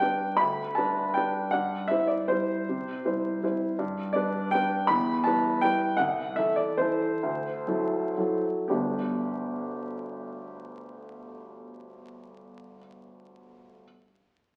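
A woody upright piano, up front with long sustain, plays alone as a graceful, playful classical waltz in G major and 3/4, with a rubato feel and a tempo ranging from 103-175 BPM. It moves through G, C/G, Em, Am/C and D9 harmonies, slowing down from 5.4 to 8.7 seconds before a new passage begins back on G. The piano rings in a wet recital hall and is heard through the crackle of a very old 78 rpm record, in a short portion cut from a longer piece.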